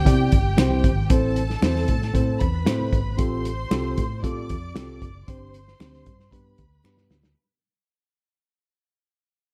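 Uptempo 1960s-style soul in 4/4 at 115 BPM with a straight feel, this short cut from a longer piece sounds uplifting and warm, moving from C through Am and Fadd9/A to Gsus4 and G. A punchy, up-front soul drum kit with a smooth, medium-tuned snare and hi-hat drives the groove. Beneath it, a round, foam-muted fingered electric bass with a dark, amped tone plays from the very start. A mellow tine electric piano, clean and heard through its built-in speakers, carries the accompaniment, while a lush bowed string section with rich vibrato and a focused, silky top adds a second line higher up. Low-tuned congas sit barely audible in a distant large room, and finger snaps enter at 0.6 s in the background. The whole passage plays as a fade-out under light reverb and a dark production, closing with a drum fill from 6.8 s.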